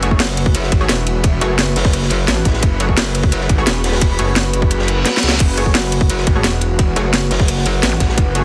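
A straight 4/4 groove at 173 BPM drives this dark, technical drum and bass excerpt in F# minor, with a futuristic, mechanical mood sitting over an F#madd9 chord. Up front, a tight, overdriven electronic kick and a layered drum and bass kit with a cracking snare, bright hats, rim clicks and crashes carry the beat, while a crunchy acoustic breakbeat kit with dark cymbals and a high-tuned snare sits gritty and rolled-off in the background. The low end pairs a thick, lush detuned saw bass, saturated and chorused, with a metallic, aggressive FM wobble bass that is distorted and bright, playing from 0.2 to 3.5 seconds and returning at 5.7 seconds. Nasal orchestra-hit-like synth stabs with tape echo and built-in reverb punch through behind the drums, an airy, breathy pad pumps with sidechain and phaser, and a very quiet, warbling vintage pad holds deep, moody sustained chords underneath. The kick drops out between 4.7 and 5.4 seconds as a reverse cymbal rises into a short drum fill, and the whole piece is pressed into a dense, heavily limited modern master with light reverb.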